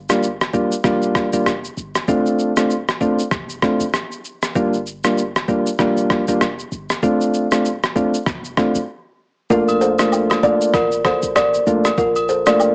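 A deep, boomy 808-style bass sits in the background from the opening of this sultry, smooth afrobeats excerpt, joined almost at once by round, warbling electric-piano-like synth keys with chorus and by a muffled, pitched-down trip hop sampler-style kit of thumpy kick, rim click and shaker, both up front and coloured by cassette tape. After a brief break at 8.9 seconds, a woody, hollow-sounding kalimba riff enters at 9.5 seconds, with close, dry agogo bells and woodblock arriving just after. The recording has a lo-fi home-cassette character, with light reverb and a small-speaker sound.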